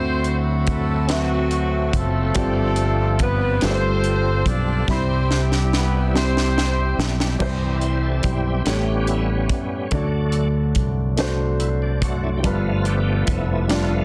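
Uplifting and soulful, this slow gospel passage in 6/8 moves at 48 BPM in C major, built on a woody upright piano, an up-front fingered electric bass, and a crisp fusion drum kit with a high-tuned snare and tight kick that plays a fill from 4.9 s. A loose pop-style horn section with octave doubling and slapback echo carries the melody until 7.4 s, when the bright, shouting tonewheel organ, which sustains chords throughout with slow rotary speaker, chorus vibrato and key click, takes a solo. Beneath it a distant, very quiet French horn section holds classical-style chords, and the dense, heavily limited modern master sits in light small-room reverb.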